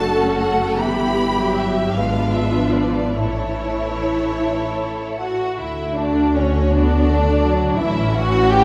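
In a rubato 6/8 at 48-56 BPM, this lyrical, tender slow romantic movement for string orchestra in D major, cut from a longer piece, sets a rich, vibrato-laden first violin melody over smooth second violins, focused violas, dark cellos in the background and soft-attack double basses up front, all heard from further back in a wet scoring-stage reverb as the harmony moves through a diminished chord toward A before a new section begins at 5.6 seconds.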